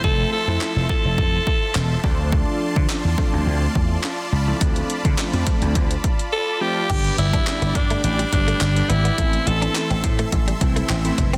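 Dance-pop at 105 BPM, carefree and upbeat, built on a house drum kit with a punchy kick and cracking snare and an amped vintage slap bass up front, while a glossy chorused polysynth and huge, detuned supersaw chords pump under sidechain; a raspy, gritty alto saxophone melody with light vibrato and digital delay opens briefly and returns at 6.3 s, and a clean, direct-recorded electric guitar riff with ensemble chorus enters in the background at 6.9 s, over light reverb in a dense, heavily limited modern master as the harmony moves from Fmaj7 and Dm7 to G and Am.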